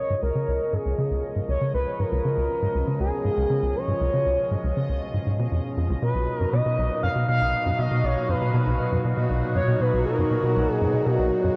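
A tight, punchy sequencer bass riff drives this straight 4/4 groove at 119 BPM, anchoring a luminous, expansive piece of ambient space music in B lydian, where a swirling, detuned analog pad fades in under phaser and chorus, a smooth, expressive lead with vibrato sings its melody up front, and a bubbling, resonant filter-stepped texture drifts in the background from 0.5 s, all washed in a huge 7.5-second reverb and a worn, warbling cassette-tape haze as the harmony moves from C#7 to Bmaj7 at 6.0 s.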